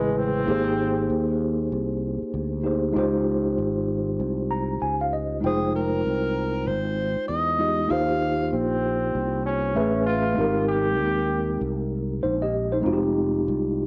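Mellow and nocturnal, this swung 97 BPM hip hop excerpt sets a tine electric piano's clean, gently cassette-worn chords over a growly, punchy fretless bass, with a breathy, subtone alto saxophone taking the jazzy melody from 5.5 to 8.5 seconds before a bright, forceful trombone with vibrato, first heard briefly at the opening, returns at 8.5 seconds, both horns bathed in plate reverb across lush changes from Abmaj9 through Dbmaj9#11 to Fm9.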